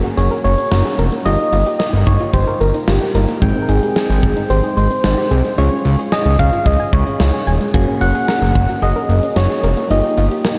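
Synth-pop with a wistful yet upbeat mood, this dreamy excerpt cut from a longer piece is soaked in lush hall reverb, with a huge, punchy arena drum kit pumping beneath a round, FM-tinged lead melody treated with chorus, delay and vibrato. Mellow electric-piano-like synth keys carry the chords from Gbadd9 through Abmaj7 to Db, while a nasal pluck spins arpeggios in the background. A fat, detuned sawtooth bass with a saturated edge and a filter sweep sits up front, entering at 0.2 seconds.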